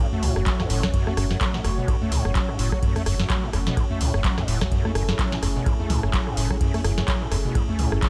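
A squelchy, overdriven acid bass stands out in this hypnotic, raw acid house excerpt, its resonant square-wave riff plucking and decaying with a saturated edge, colored by ensemble chorus, cassette tape character, dub echo and sidechain pumping. Beneath it, a round sine sub bass with tube saturation sustains deep low notes from 0.2 seconds, also pumping against the beat. A booming analog drum machine sits up front with a tonal snare, metallic hats, ride cymbal, rim clicks, handclaps and toms, all dry and tape-toned but sent into studio reverb and dub echo. A deep electronic kick joins at 0.5 seconds, driving a swung 4/4 groove over a single minor chord. Quietly in the background, a detuned sawtooth pad holds slow-attack chords with a moving notch, chorus, vintage 12-bit sampler grit and sidechain pumping, all within a light, echo-heavy digital ambience.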